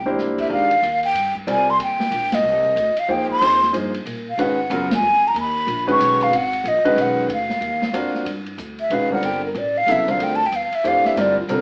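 Modal jazz in a brisk 3/4 at 186 BPM, swung on the eighth notes, this short excerpt has a spiritual, hypnotic mood and settles into G dorian at 8.3 seconds. A breathy, hollow concert flute carries the melody up front with a straight tone and soft attack, ranging from F4 to Db6, and it takes a solo from 8.3 seconds to the end. A concert grand piano with deep bass and a natural, close presence plays the accompaniment, while a woody pizzicato upright bass with steel strings holds the low end. An open acoustic drum kit with dark cymbals, a medium-tuned snare and a boomy kick opens with a fill, and the band hits accents at 2.3 and 4.9 seconds. The harmony moves from C7 through Fm9, Abm9 and D7alt before landing on Gm9. The band plays live in one room with a wet studio reverb, and the whole recording has an AM radio character.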